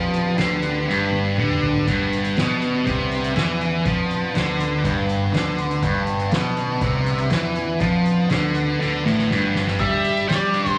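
A bright, double-tracked fuzz guitar drives this hazy, trippy psychedelic rock excerpt with a distorted, phaser-tinged riff, backed by mellow sustained chords from a vintage combo organ with light vibrato and a punchy fingered bass sitting in the background. A soft-mallet drum kit with a fat snare and boomy kick fills the large studio room, adding fills at 0.9 and 8.8 seconds. At 9.8 seconds a dark octave-fuzz lead guitar with wah steps up front for a brief melody as the clip cuts off.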